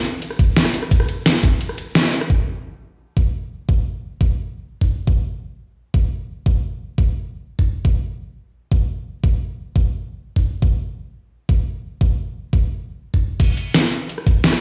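The electronic kick drum dominates this aggressive, dark drum and bass excerpt at 173 BPM, a knocking, tape-warm, layered thump sitting up front from 0.4 seconds through 14.3 seconds, dropping out briefly around 2.0 seconds where the band hits an accent. An overdriven dubstep kit with a deep snare, metallic hats, crash, ride and rim clicks, its hats, cymbals and snare darkened by low-pass filtering, frames the piece only in the opening drop up to 2.4 seconds and the closing drop from 13.4 seconds. The sound has the boom of a big sound system in a bare room under a large studio reverb.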